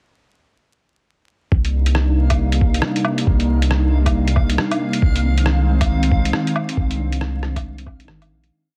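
Wistful and rainy, this short future garage piece moves at 137 BPM in C minor with a swung 4/4 groove. From 1.5 seconds a muffled, overdriven two-step kick thumps as a soft, round dub sub bass with long gliding notes pumps under an airy, breathy pad. A tape-softened lo-fi sampler kit adds a skittering shuffle of closed hi-hat, rim click and low woodblock, while a reversed, granular swell holds a high F5 in the background. Muted, warbling felt-like keys scatter dark notes with 12-bit grit and delay from 5.2 seconds, just after the harmony moves from Cm7 to Ab/C, and the dense, vinyl-crackled mix fades out from 6.2 seconds.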